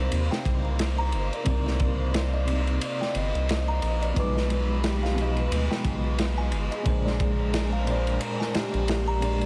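A round, deep analog bass sits up front in this dark, brooding trip hop fragment in C minor at 89 BPM with a swung feel, joined at 0.1 s by a crunchy, saturated breakbeat kit with a punchy kick and dark cymbals, while a felt-muted upright piano with audible action noise, tremolo and 12-bit sampler grit carries the accompaniment over veiled con sordino violins, a delicate tinkling music box with digital delay, and a breathy sine lead melody colored by phaser, chorus and tape echo, all moving through Cm9, G7b9b13/B and Bb9.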